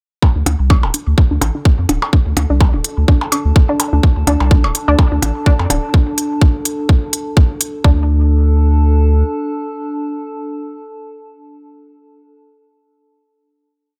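A squelchy, resonant blip pluck drives this hypnotic, sparse minimal techno piece, cycling a five-step loop that drifts against the bar while a filter sweep moves through it, with chorus, dub echo and sidechain pumping on its tail. Beneath it, a tight four-on-the-floor kick sits up front beside crisp programmed hats with a backbeat, both tape-tinged and re-recorded in a large room, over a light swing. Overdriven percussion blips of low woodblock, cowbell and low conga click in cross rhythm from a small room, their hits thrown into dub echo. A deep, saturated sub bass rolls out a staccato groove that pumps against the kick. A warbling, lo-fi pad fades in during the groove with slow, dark, shifting chords bathed in chorus and reverb, then holds a nostalgic final chord from 7.8 s until it rings out at 12.2 s.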